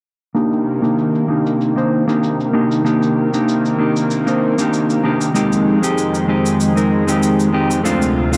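A mellow, clean electric guitar sits up front in this relaxed, wistful sunset chillout piece at 96 BPM in C minor, tuned slightly low to A4 = 438 Hz, with a light swing on the sixteenths; its fingered accompaniment sounds dark through a low-pass filter and tape echo, and a filter sweep runs across it from 0.4 seconds. Alongside it, also up front, a lush, thick unison pad of detuned sawtooth and square waves holds sustained chords with a slow attack and long release, colored by chorus and vintage 12-bit sampler grit, while a layered electronic cabasa sits quietly in the mix, muffled by low-pass filtering and the sound of a small room. The chords move from Cm7 to Fm7 at 5.4 seconds and Dm7 at 7.9 seconds, set in a moderate, lush hall reverb for a dark, warm production in this short section cut from a longer track.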